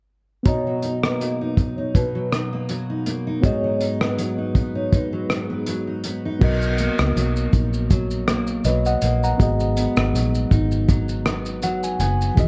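A lightly swung sixteenth-note feel at 81 BPM in 4/4 carries this laid-back, nostalgic indie and bedroom pop excerpt in B major, moving between Bmaj7 and G#m7. A cloth-damped drum kit sits up front with a thuddy, tight kick, muffled dark cymbals, hi-hat, rim click, shaker and crash, its small-room sound gritty and lo-fi. A picked steel-string acoustic guitar gives woody, full-bodied accompaniment through lush chorus and vibrato. Beside it, a reed electric piano adds reedy backing shimmering with fast tremolo and plays a fill from 11.3 seconds. A soft-mallet vibraphone rings a mellow second line through analog chorus and delay until 5.5 seconds, and at 6.4 seconds a muted fingered electric bass enters, round, amped and prominent in the mix. The production is dim and warm, with light reverb.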